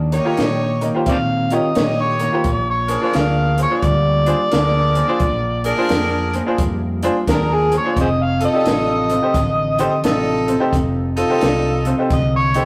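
An overdriven harmonica sits up front and carries the solo from 1.1 seconds, its gritty, amplified tone marked by light vibrato, tongue slaps, scooped notes and an analog delay, all phrased in a jazz style. Underneath, this swaggering, laid-back electric blues shuffle moves at 87 BPM in a swung 4/4 through Eb7, Bb7 and F7. A guitar through a small old amp plays a slightly broken-up, compressed, picked riff, while a fingered electric bass adds a round, dark, amped low end. A woody, slightly detuned upright piano with audible action noise fills in the accompaniment, and a bright saxophone section with vibrato punches short stabs through its own analog delay until 12.0 seconds. A compact cocktail kit keeps hi-hat, a punchy kick and a high-tuned snare smooth in a small room, and the whole excerpt, cut from a longer piece, has the rough feel of a rehearsal-room recording with moderate stone reverb and warm saturation.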